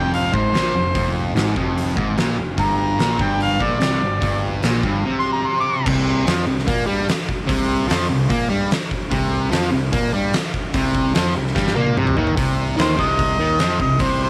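Blues rock and southern rock in a power-trio mold, this brooding, heavy excerpt drives along at 147 BPM in a straight 4/4, settling into C minor from 5.9 s, with a distorted, bright, double-tracked electric guitar riff up front over growly, overdriven picked bass and an oversized low-tuned drum kit with a boomy kick, fat snare and dark cymbals in a pumping, gritty room sound. A punchy, smooth-topped harmonica with overdrive and slapback echo carries the melody at the start, then steps out again after a drum fill ending at 12.4 s for a short solo over the closing C minor stretch, all in light reverb and small-room ambience.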